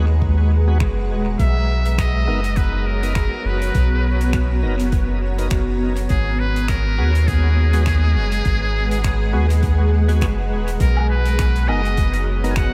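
A cloudy, granular pad with vintage sampler grit opens this spacious, meditative ambient dub excerpt alongside a round, up-front sub bass and very quiet stabs from a bright, lightly overdriven tonewheel organ with slow rotary speaker, as a deep electronic kick settles in the background, a soft-mallet kit of finger snaps, hi-hat and woodblock adds dub echo from 0.8 seconds, and a buzzy metal-muted trumpet with vibrato carries the echoing melody from 1.4 seconds over chords moving between G#m7 and Bmaj7.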